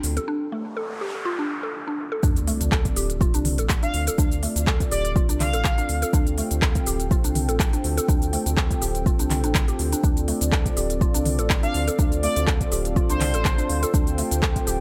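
A swung 4/4 groove at 123 BPM drives this spiritual afro house cut from a longer piece, built on an afro-pop drum kit of handclaps, crisp hats, rim click, shaker and toms with a tape-touched, small-room character. Set in D minor pentatonic over a Dm7 chord, it opens with a moody, detuned pad holding sustained chords beneath a woody, mallet-like FM pluck spinning arpeggios through chorus and dub echo, both breathing with sidechain pumping. A round analog bass with tube saturation anchors the low end, while a noise sweep builds toward the drop at 2.2 seconds, where a sub drop lands and a deep electronic kick enters and carries the groove to 14.6 seconds. A smooth, resonant sawtooth lead with vibrato, analog chorus and dub echo sings expressive melodic lines at 3.8 seconds and again later on. The mix stays dry and close, with little reverb.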